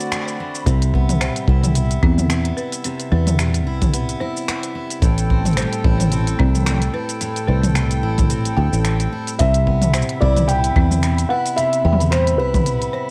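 Warm and delicate, this short folktronica cut from a longer piece moves at 110 BPM in 4/4 with a gentle swing, settled in C lydian and drifting from D7 through Cmaj7 and Am7. A bright, full-bodied steel-string acoustic guitar picks arpeggios with audible finger squeak, while a reedy accordion holds sustained chords with slow beating and a woody, rustic folk marimba struck with hard mallets adds a dry second line in the background, both guitar and marimba trailed by tape echo. The groove pairs an organic electronic kit of finger snaps, smooth hi-hat, shaker and toms with a tight, dry kick that enters at 0.7 seconds alongside a punchy, foam-muted fingered electric bass sitting up front with tube saturation. A grainy, flickering granular texture glimmers in the background with its own reverb at the start and returns near the end. At 9.4 seconds a felt-muted upright piano takes the melody, soft and intimate with audible action noise, colored by cassette tape and tape echo. 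The whole piece has the close, small-room feel of a home recording on cassette.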